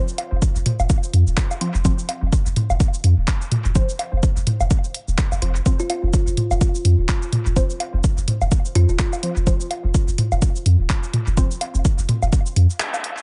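A swung 126 BPM minimal techno groove in 4/4 sets a quirky, clinical mood for this short cut, driven by an up-front, punchy electronic kick and a deep sine sub bass that pumps with the sidechain, while a tape-warm house kit of handclaps, hi-hat and shaker and analog woodblock and toms ring through dub and tape echo, muted detuned sawtooth-and-square stabs pluck an F5 chord through a phaser, a woody kalimba on F4 sounds from 5.8 to 9.0 seconds, and the echo-heavy, dark-topped mix ends on a band accent at 12.8 seconds.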